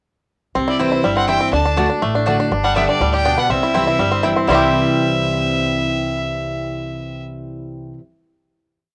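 Lively and joyful, this short bluegrass piece in C major races at 244 BPM, with a clear, biting fiddle up front carrying a motif-based melody over twangy, percussive three-finger banjo rolls, a full-bodied dreadnought guitar alternating bass and strum with bass runs and audible finger squeak, off-beat mandolin chop set back in the mix, and a woody, thumpy upright bass playing a two-beat root and fifth, the guitar, banjo and mandolin carrying a cassette-tape tint inside a wet booth ambience before the band lands on a final chord at 4.5 seconds.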